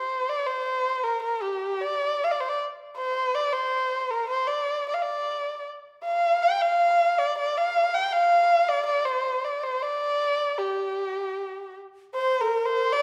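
Bathed in the lingering reverb of a recital hall, this graceful, wistful fragment of Chinese traditional chamber music moves in a rubato 2/4 around 79 BPM, with a single dark, nasal erhu bowed up front carrying the melody with vibrato and sliding portamento from the start, joined at 12.1 seconds by an airy bamboo xiao that slips in alongside it as a mellow, tongued second line.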